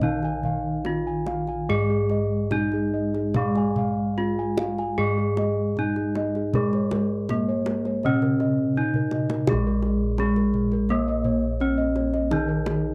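Ceremonial and serene, this Javanese gamelan passage, cut from a longer piece, moves at a straight 72-85 BPM in 4/4. A bronze metallophone carries the melody with a ringing, up-front tone struck by horn mallets, while a second, darker metallophone supports it with smooth, shimmering beats from its paired tuning. Bossed gongs played with padded beaters supply mellow arpeggios and a round, boxy bass, and a tight kendang under soft hands drives a drum fill from 8.8 to 9.5 seconds into a new section, all captured in a dry, close 1970s-style studio sound with light reverb.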